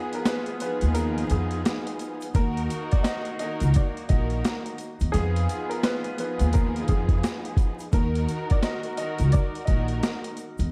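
Boom-bap hip hop at 86 BPM in Eb minor, this reflective, moody excerpt swings its 16ths and alternates between Fm7b5 and Ebm. A worn, slightly detuned upright piano carries the melody with analog delay over lush bowed strings with vibrato, while a smooth horn section adds background stabs, also touched with delay. A gritty, pitched-down sampler kit with a thumpy kick and high-tuned snare enters at 0.1 seconds, a very quiet, grainy egg shaker at 0.3 seconds, and a woody pizzicato upright bass sits up front from 0.8 seconds, all within a dark, warm small-room sound laced with vinyl crackle.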